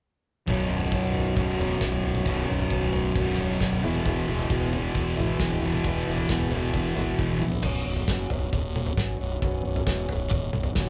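A thick, bright fuzz guitar sits up front with a distorted riff from 0.5 to 7.4 seconds, driving this restless, anthemic quiet-loud alternative rock excerpt at 134 BPM in a straight 4/4, over chords moving from Bsus2 to E and then Badd9. Beneath it, a boxy old ladder-braced acoustic guitar fingerpicks dark arpeggios, an overdriven fuzz bass adds a round, low growl, and a loose indie drum kit with dark cymbals, a tight kick and a rolled-off top plays crash, snare and toms, throwing in a fill at 7.4 seconds. The band sounds as if it is playing live in one large studio room, with moderate reverb around it.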